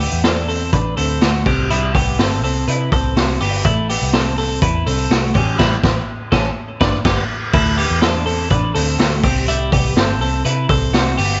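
Nostalgic and bright, this brief cut from a longer jangly indie pop track moves at 123 BPM in a straight 4/4, with a clean, twangy twelve-string electric guitar up front playing picked arpeggios through tape echo, a dark, round, foam-muted vintage electric bass, and a gritty, boomy garage drum kit of kick, snare, hi-hat and crash, all cycling through Dsus2, C, Am, A7 and G with a band accent from 5.6 to 7.5 seconds, in a lightly reverberant mix whose top is rolled off.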